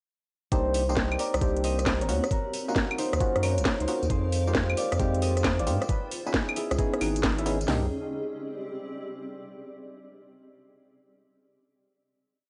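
A thumb-plucked concert harp rings out a repeating riff in thirds and sixths over a moody, skippy two-step garage groove, where a thick, saturated sub bass carries a syncopated line up front, hollow organ stabs with chorus and phaser punctuate rootless chords, two layered electronic drum kits pair a knocking four-on-the-floor kick and cracking snare with swung metallic hats, rims, claves and tambourine, and a blurred granular pad drifts in the background from 1.2 seconds and lingers over the final chord until 9.4 seconds, all within a dry, gritty mix.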